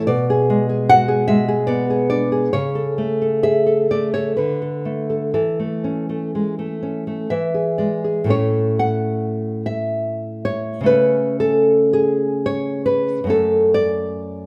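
In a flexible 3/4 with generous rubato, the tempo drifts between 58 and 79 BPM, giving this romantic solo classical guitar piece a gently breathing pulse. The mood is sunny and tender, set in A major and carried entirely by a single nylon-string guitar that sits up front, its thumb-plucked tone warm and acoustic across a range from F#2 to F#5. The opening phrase moves from G#dim/B through A/C#, Bm7/D and A/E before resting on E around 7.3 seconds, then a new section begins at 8.3 seconds on a settled A chord. From there the harmony passes through A/C# and turns toward F#m near the close of this short excerpt from a longer work. A moderate recital-hall reverb lends the guitar an intimate sense of space, letting each note bloom briefly before fading.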